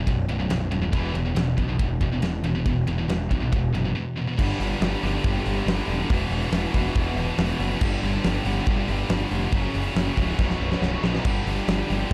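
Heavy metal at 140 BPM in a straight 4/4, this short cut from a longer piece feels heavy and relentless from the first beat. Two bright, distorted, picked high-gain guitars drive the riff, the scooped one sitting in the background, over an up-front overdriven bass with a growly fuzz tone. A big acoustic rock kit, dark and smooth with a fat snare and punchy kick, works through crash, hi-hat, ride, snare and kick. After a brief break at 4.0 seconds, a very quiet studio string section enters at 4.4 seconds with bowed sustained chords, its gut-string ensemble tone reedy and period in style. The harmony moves through power chords on B, E, G and F#, returning to B at 10.4 seconds as a drum fill begins, before closing on G. Small room ambience gives the production a dark, warm character.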